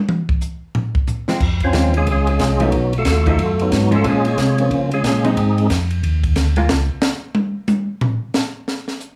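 A brisk, swinging groove from a compact cocktail drum kit with dark cymbals, a high-tuned snare and a punchy kick opens this soulful, greasy soul jazz organ trio excerpt, the drums taking solo breaks over the opening seconds and again from about 6.7 seconds. A mellow tonewheel organ carries the bass line with a round, clean tone, key click and slow rotary speaker, while a hollow-body jazz guitar adds dark, picked, compressed accompaniment. Out front, a fat, percussive tonewheel organ takes the melody with third harmonic percussion, chorus vibrato and slow rotary swirl, all set in a small room with moderate reverb.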